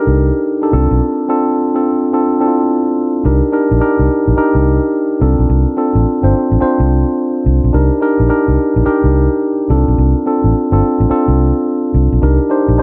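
R&B new jack swing cut from a longer piece, punchy and bouncy at 107 BPM with a swung 16th-note feel in C dorian, where a mellow, clean tine electric piano sits up front moving between Cm9 and Dm7 over a round, foam-muted vintage fingered electric bass that enters at 0.1 seconds with an amped, dark tone, all set in a moderate plate reverb and a warm, shadowy production.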